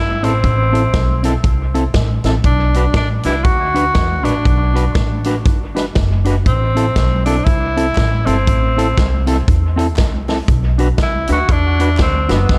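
A clear tenor saxophone and a woody upright bass open this mischievous, energetic ska excerpt at 119 BPM in 4/4, swung on the eighths, with the chords moving between A minor and B minor. The saxophone carries the melody with a soft attack and scooped notes, its vintage tone trailed by dub echo. The bass sits up front, plucked and growly on steel strings. A dark, clean, fingered electric guitar and a swinging big-band drum kit come in at 0.2 seconds, the kit sounding natural in a big room with a punchy kick, a medium-tuned snare and hi-hat, and it also carries dub echo. From 7.0 seconds a very quiet group handclap adds a hollow, live-room touch. The whole is framed by light reverb and studio ambience in a dark production.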